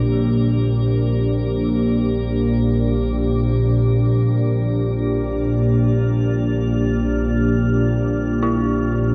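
A warbling, organ-like drone sits up front, holding low on Bb in free time and giving this short dark ambient excerpt its calm but desolate weight. Beside it, a deep, moody analog pad sustains a Bbsus2 chord throughout its 9.1 seconds, its detuned sawtooth tone thickened by a sub octave and softened by chorus and shimmer reverb. Higher up, an icy glass pad adds a faint, crystalline layer of airy texture with a breath of noise. In the background, an eerie, inharmonic synth bell plays quiet arpeggios that decay into a diffuse ambient delay. The whole piece floats in a cavernous cathedral reverb, with a dark, rounded production that keeps the upper frequencies subdued.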